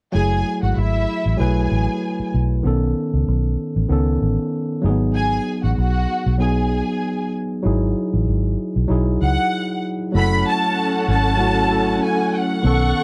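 A lightly swung 96 BPM soul groove in F# dorian sets a silky, bittersweet mood, with a round, punchy, foam-muted fingered electric bass up front, a clean tine electric piano through a combo amp, and a dark, woody string section playing a lush second line over chords from F#m9 through B9, G#m7 and Emaj9/G#, and at 9.2 seconds a violin section joins with a soft-attack, portamento melody, all in a dry, close 1970s-style studio sound with light reverb.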